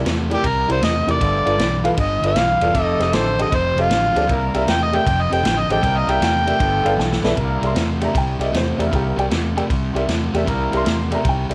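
Soulful and laid-back, this electric blues shuffle at 156 BPM in C mixolydian features a gritty, amplified harmonica that takes an up-front solo full of tongue slaps, scooped notes and vibrato from 0.3 to 7.0 s. Beneath it run an overdriven semi-hollow guitar riff, a round, foam-muted fingered electric bass and a distant, roomy big-band drum kit with a boomy kick and ride cymbal. A dark, woody upright piano with audible action noise accompanies throughout and plays a fill from 6.8 s, just ahead of a drum fill before 7.4 s, while mellow, octave-doubled horn stabs punctuate the groove in a light reverb.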